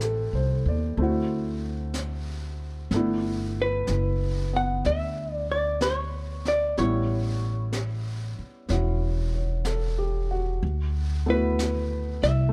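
From the first moment, a tender, romantic jazz ballad opens with all four players together: a clean, dark hollow-body electric guitar carries the melody up front, over an upright piano, a pizzicato upright bass and a brushed drum kit. The tempo is a slow 62 BPM in 4/4 with a gentle swing on the eighth notes, settled in D major. The picked, compressed guitar line sits between A4 and F#5, while the piano's intimate, natural comping lets its action noise through, and the woody steel-string bass sits close and prominent in the low register. Soft brushes on a high-tuned snare and hi-hat stay far back, sounding like a small acoustic room. The harmony moves from Am7 to D9, rests on G6, then passes through A7 before settling on D69 at 10.6 seconds. The production is dry and dark, and this 12.5-second passage is cut from a longer piece.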